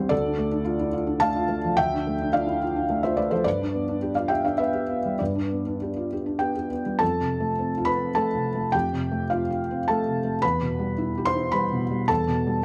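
Intimate and melancholic, this 12.6-second excerpt of neoclassical minimalist piano moves in a rubato 3/4 at about 107 BPM, with a solo felt-muted upright piano, tuned to A4 = 439 Hz, sounding soft and mellow up front through close, detailed microphones that catch its natural action noise in a light reverb, as the harmony shifts from Dm and G to F at 7.0 seconds and then Em at 10.4 seconds.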